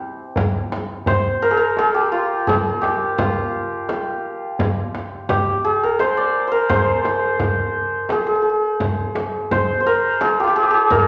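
Stately and festive, this Persian modal ensemble piece moves in a straight 3/4, with an up-front santur carrying the melody between C4 and D5 in a warm, hammered, shimmering and ringing voice. Beneath it, a close, deep tombak played with soft hands sits quieter from the start, and a large, compressed, saturated frame drum struck with hard hands joins at 0.4 seconds. A wet, large studio reverb surrounds the ensemble in this passage cut from a longer piece.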